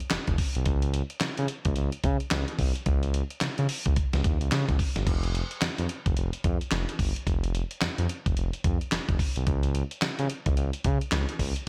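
This slick, bouncy new jack swing excerpt opens on a dusty, sampler-style drum kit, with kick, snare, hi-hat, handclaps and crash cymbal riding a swung 16th-note feel at 109 BPM in 4/4. The kit sounds compressed and gritty, with a thumpy kick, a medium-tuned snare and a tape-warm character, as if re-recorded in a large room, yet it sits up front. A smooth synth bass joins at 0.1 seconds, blending sawtooth and triangle tones with a fast attack, sustained notes and portamento glides, ranging from F1 to Db3. The bass is also placed up front and carries a smooth, warm body alongside the drums. The music moves into a new section at 5.1 seconds, and the whole is bathed in light reverb, with the fragment cut from a longer piece.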